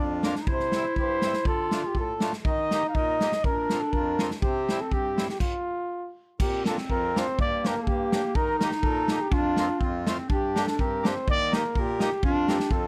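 A dark, up-front trumpet carries the melody with light vibrato and a smooth, classical tone over a warm clarinet second line, reedy, hollow accordion accompaniment and a punchy, natural acoustic drum kit of crash, kick and snare in this bouncy, festive alpine dance-band excerpt at 122 BPM in 2/4 with a rubato feel, where a stop from 5.4 to 6.4 seconds gives way to Bb major, all recorded close and dry with the drums in a studio room.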